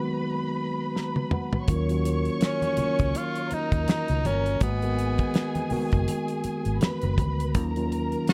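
An 82 BPM groove in 4/4 with a light sixteenth-note swing carries this bittersweet, smooth cut of lush 1970s-style soul, moving between Abm9 and Ebm9. A mellow tine electric piano and a bowed string section with vibrato and portamento open the passage. The piano plays a fill as the damped drum kit, with its fat snare and tight kick, arrives at 1.0 seconds with a fill of its own, and the round, foam-muted electric bass, low-tuned congas and a ringing soft-mallet vibraphone in the background join at 1.7 seconds. From 2.4 seconds a raspy, gritty tenor saxophone takes the up-front melody with scooped notes, in a dry studio sound with little reverb.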